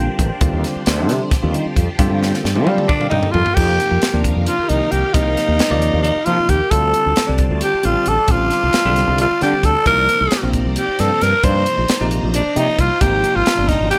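A growling, breathy tenor saxophone with scooped notes and slapback echo takes the solo from 2.9 seconds, riding a nocturnal, driving electric jazz fusion groove in 7/8, built from bell-like electric piano accompaniment, a swirling phased string machine in the background, a chorused fretless bass with a growly edge, and a crisp drum kit with a high-tuned snare and dark cymbals whose fill leads into the second section, in this cut from a longer piece.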